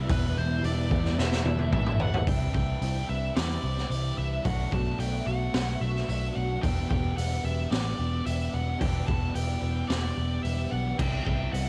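A straight 4/4 pulse comes from a raw garage drum kit sitting up front, with a high-tuned snare, boomy kick, hi-hat, toms and crash cymbal, all gritty and saturated with a rolled-off top, and a drum fill runs from 1.2 to 2.3 seconds before the second section begins. This brooding, hazy slice of shoegaze and dream pop, cut from a longer piece, moves through Em7, Cadd9 and Bm7 as a vintage muted picked electric bass anchors the low end with a dark, round, foam-muted tone. Set back in the mix, a fingerpicked twelve-string acoustic guitar plays boxy, shimmering, octave-doubled arpeggios with a swing feel, coloured by ensemble chorus and tape echo. Two electric guitars share riff duties in the background: one through a small old amp sounds slightly broken-up, compressed and lo-fi, bathed in reverse reverb, while an overdriven one carries a subtle chorus. Above them, a nasal lead guitar with a parked wah and overdrive sings a high melody trailed by tape echo. 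The whole home cassette recording feels close and dry, with little reverb and a worn, warm tape character.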